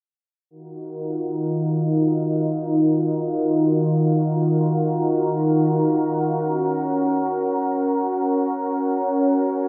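A lush hall reverb bathes this short synthwave excerpt, which passes through a low-pass filter while a filter sweep runs from 0.5 to 9.7 seconds. The only part is a thick, detuned unison pad, built from sawtooth and square waves and thickened with chorus into a warbling, vintage tone that sits up front in the mix. It holds sustained chords between Eb3 and Bb4, with slow attacks and long releases. The music moves in free time in Eb minor, tuned to A4 = 442 Hz, opening on an Ebmadd9 chord and shifting to Gb at 6.4 seconds. The mood is nostalgic yet driving, like a fragment lifted from a longer piece.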